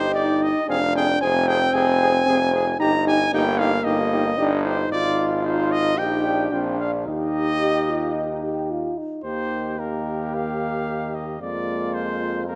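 From the first beat, a full brass quintet plays together in a triumphant, noble classical passage in E-flat major at 113 BPM in a straight 4/4: the mellow trumpet sits up front carrying the melody from Bb4 to Bb5 over a soft-attacked, roomy flugelhorn second line, while a clear French horn and a warm euphonium accompany in the background and a distant bass trombone anchors the bass, every instrument touched with light vibrato and captured by close, detailed microphones with light reverb in this 12.6-second cut from a longer piece.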